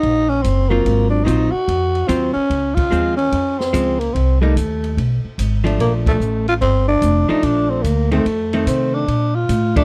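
Small-group swing and bop jazz in Bb major at 146 BPM, swinging and warm, this short excerpt features a growling tenor saxophone carrying the melody up front with a breathy, raspy subtone, vibrato and scooped notes over a woody pizzicato upright bass. An open acoustic drum kit with dark cymbals, a high-tuned snare and a boomy kick sits lower in the mix, while a dark, clean hollow-body archtop guitar enters at 0.7 s to comp through chords such as Ebm, Dbmaj7 and Bbmaj7. The band hits accents at 2.7, 6.0 and 9.7 seconds in a dry, close 1970s-style studio sound.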